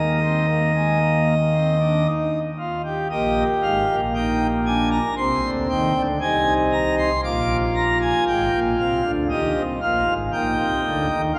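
A full principal chorus on pipe organ opens the recording alone, sounding an Eb major chord in a baroque-style three-part fugue that feels elegant and stately. The tempo is a slow, straight 58 BPM in 4/4, and the organ, the only part, sits up front with a full romantic voicing that spans from a deep Ab1 up to a bright D6. A first phrase gives way to a new section at 3.1 seconds, and the harmony moves through Ab over C and a Bb7 before settling home on Eb at 9.3 seconds. A long, wet cathedral reverb surrounds the instrument, letting each chord ring on in a large church or concert hall. Tuned slightly high at A4 = 441 Hz, this brief passage of about 11 seconds is cut from a longer piece.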